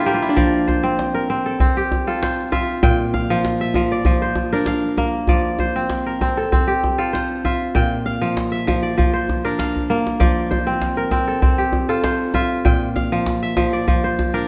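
West African traditional music with a warm, hypnotic mood, built on a mellow, ringing kora that sits up front, fingerpicking crisp arpeggios over a steady alternation between two chords. A medium-tuned djembe accompanies it from 0.2 seconds, adding a brief drum fill at 9.7 seconds, after the kora opens with its own short fill. The whole passage is bathed in a recital-hall reverb and is cut from a longer piece.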